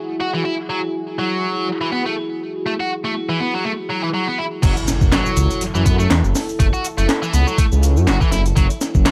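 Breakbeat at 122 BPM in F# minor, this energetic, gritty piece opens with a moody, chorused analog pad pumping under sustained chords beside a bright, double-tracked distorted guitar riff carrying low-pass filtering, delay and 12-bit sampler grit, then drops at 4.6 s into a compressed, pitched-up sampler-style break with a thumpy kick and high-tuned snare, a rumbling detuned saw bass, small-room electronic shaker and handclaps, and an electronic impact in the background.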